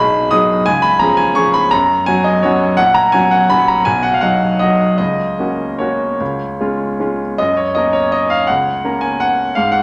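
A clear baby grand piano carries this short classical waltz on its own, its natural tone and long sustain placed up front from the opening second to 9.8 s. The mood is playful and elegant, moving in 3/4 with a rubato feel as the tempo drifts between 144 and 181 BPM. Set in F# major, the piano ranges from A#1 up to D#6, with harmony passing through G#m7/B, C#, F# and B before settling back on F# as a new section begins at 7.4 s. A wet recital hall reverb with a 1.6-second decay surrounds the instrument, and a touch of tube saturation colors the recording. This brief excerpt is cut from a longer piece, ending just after that second section opens.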